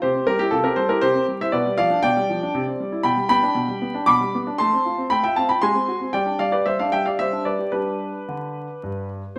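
A present grand piano with long sustain rings up front in a moderate recital-hall reverb under vinyl crackle, playing an elegant, playful classical-period sonatina in 3/4 at 109-120 BPM with a rubato feel, moving from C through G7/B, F/A and Ab7 to rest on G at 6.1 seconds in this brief solo excerpt cut from a longer piece.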